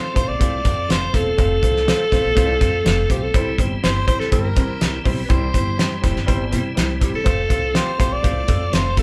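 Uptempo 1960s-style soul with an uplifting, joyful feel, where a breathy, clear alto saxophone carries the melody up front over warm grand piano, a piping tonewheel organ holding sustained chords through a slow rotary speaker, a woody, growly upright bass and a cloth-damped, thuddy drum kit with a fat snare and tight kick that join at 0.2 seconds, all played live together in one room with moderate studio ambience.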